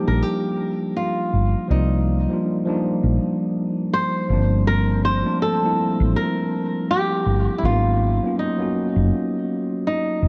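A flamenco guitar melody and a tine electric piano open this nostalgic, melancholic lo-fi hip hop excerpt together, joined at 0.1 s by a woody fretless electric bass. The tempo sits at 81 BPM in 4/4 with a 60% swing on the sixteenths, and the harmony moves from Cm11 to Gm11 at 4.3 seconds and to Abm11 at 7.6 seconds. The fingerpicked guitar, warm with fresh strings, carries the tune through a low-pass filter and a diffuse ambient delay, while the clean electric piano, heard as if through built-in speakers, comps with a cassette-tape tint and its own low-pass filter. Underneath, the fretless bass is dark, round and punchy, with a hollow-body character and an ensemble chorus, and it sits loudest of the three. The dreamy mix is soaked in a moderate plate reverb and has a cassette-tape quality, keeping the parts up front yet hazy.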